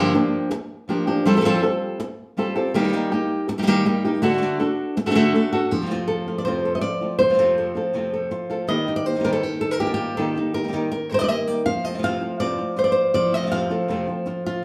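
Two fingerpicked acoustic flamenco guitars open together, one carrying an up-front melody with audible finger squeak while the other plays stabs further back in the mix. The mood is dramatic and passionate, with a straight feel in four and a brisk pulse, tuned slightly high to A4 = 442 Hz. The melody guitar ranges from G2 up to F5, and the stab guitar sits lower, from F2 to G4. The harmony moves through Gm7, Fadd9, Eb and D before a second passage at 5.7 seconds settles into slower changes between F and Eb. Both guitars share a large studio room with a wet, lingering reverb that gives the live, in-the-room performance a spacious glow. This is a short cut from a longer piece, with the stabs stopping at 14.3 seconds and the melody ringing on to 14.6 seconds.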